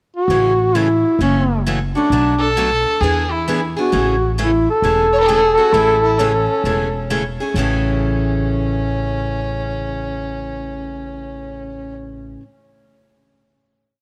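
Acoustic string swing in the jazz manouche style, this short, complete piece moves at 132 BPM in 4/4 with a swung eighth-note feel in A major, and its mood is swinging and charming. A mellow duduk carries the melody up front in a folk style, singing motif-based song phrases with vibrato and scooped notes until about 7.1 seconds. Behind it, a bright, picked steel-string acoustic guitar keeps four-to-the-bar rhythm with short accents on two and four, while a woody, thumpy upright bass with gut strings plays a pizzicato two-beat root-and-fifth line. From 2.4 seconds a dark, earthy bowed violin with light vibrato and a smooth top adds answering phrases in the melody's rests. The harmony cycles through Amaj7, F#m7, Bm7 and E7 before returning to Amaj7, and the piece closes on a held final chord from 7.5 seconds, all set in light reverb with a small-room ambience.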